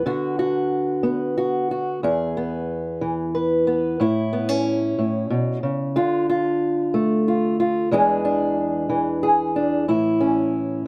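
Heard in light reverb, this brief, hopeful folk passage cut from a longer piece features a single up-front, fingerpicked old ladder-braced acoustic guitar whose old strings give a dark, woody, boxy tone, moving at 61 BPM in 6/8 in A major through Bm/D, E, A, Dm and E7 before landing on A at 9.9 seconds.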